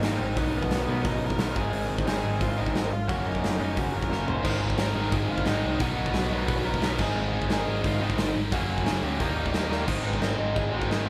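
This rebellious, energetic punk rock excerpt at 177 BPM opens with a band playing live in one room with light reverb. Up front are a punchy big-room drum kit with bright cymbals and a double-tracked, overdriven semi-hollow guitar riff, along with a growly picked electric bass, while a dark lead guitar through a small cranked amp carries the melody in the background. Just after a drum fill, a heavy high-gain guitar adds its distorted riff behind the band at 4.4 seconds, and the chords move through B, Ab, Gb and Eb before a second fill at 9.7 seconds leads into a short closing section on Ab.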